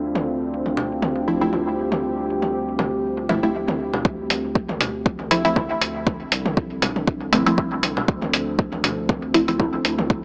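Hazy and cavernous, this dub techno excerpt in D minor moves at 119 BPM with a light swing, as a deep, moody pad holding a Dm7 chord and a round, tube-saturated analog bass pump under sidechain from the start, electronic toms and congas with dub echo and muted, phaser-washed chord stabs soon join, and an overdriven kick and muffled, pitched-down hi-hat arrive up front around 4.0 seconds, all heard through a dry, gritty, small-speaker sound.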